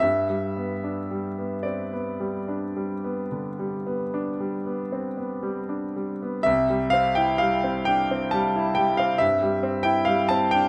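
A romantic classical nocturne for solo concert grand piano, tender and nostalgic, moves slowly in 12/8 at about 36-47 BPM on the dotted quarter with a free, rubato feel in C major, tuned to A4 = 441 Hz. Cut from a longer piece, the 10.7-second passage opens on G and settles onto C at 6.5 seconds, where the opening section returns, spanning C2 to A5. The piano sounds intimate and polished, placed up front with deep bass, audible action noise and light reverb.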